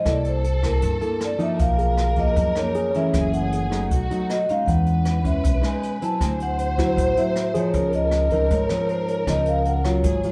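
Bossa nova at 156 BPM in 4/4 with a straight feel, relaxed and breezy, cut from a longer piece. A vibraphone played with medium mallets carries the melody, its metallic, ringing tone heard with the motor off in a boxy small room, while a dark, full-bodied nylon-string guitar sits up front, fingerpicked with a deep classical character. A growly, woody upright bass with steel strings plays pizzicato underneath, and a jazz brush drum kit, distant and roomy with a boomy kick, keeps time on hi-hat, kick drum and rim click. A lush symphonic violin section adds a bowed, expressive second line with vibrato and portamento from afar, and a worn, slightly out-of-tune tine electric piano, clean through a combo amp, sits in the background from 0.0 to 3.4 seconds and returns at 6.8 seconds. The harmony moves through rich extended chords such as Cbmaj9#11, Emaj13 and Dbmaj9, and the whole ensemble sounds from further back in the room with a moderate plate reverb.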